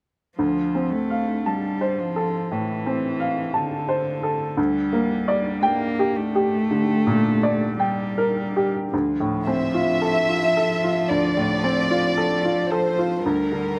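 Longing and melancholic, this neoclassical piece for piano and strings unfolds slowly in a rubato four-four, cut from a longer work. A bright, woody upright piano carries the accompaniment from 0.4 seconds, sitting up front with a slapback echo and ranging from deep bass to high treble. Alongside it from the start, a single rich cello plays a focused, bowed second line with vibrato and a smooth top. At 9.5 seconds a chamber violin section takes up the melody, intimate and close, bowed sul tasto with light vibrato and a soft attack. The harmony moves between Dm7 and Gm/D, and the whole is heard dry and outdoors, free of any room sound.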